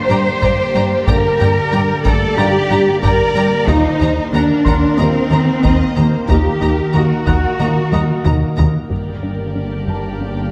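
An up-front, expressive cello section carries the bass of this tense, futuristic hybrid orchestral and electronic film cue at 92 BPM in G harmonic minor, joined by lush bowed double basses and a rubbery, hollow square-wave bass riff. Hard-stick taiko drums sit close and dry, with a fill from 7.9 to 8.9 seconds, while a distant violin section carries the melody over a focused second violin line, very quiet viola accompaniment, and a squelchy, juicy blip pluck playing arpeggios. Dark, roomy French horns hold chords until 8.6 seconds, alongside very quiet trombones, an evolving, morphing wavetable pad with ensemble chorus, and a mellow baby grand piano adding texture, all in a scoring-stage reverb as the harmony moves from Gm to Ebm and back to Gm at 8.9 seconds.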